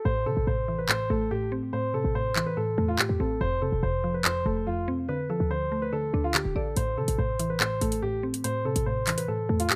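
Drill hip hop in a tense, ominous half-time feel, this excerpt opens with a dark, mellow baby grand piano melody carrying a vintage tape echo, joined at once by a woody, round FM synth pluck with chorus and a punchy, tight 808-style bass whose sine tone carries a noise layer. The electronic drill kit arrives at 0.9 s, putting handclaps and metallic hi-hats up front. A break runs until 6.8 s over a cycle moving from Am through F and Dm back to Am, all set in light reverb.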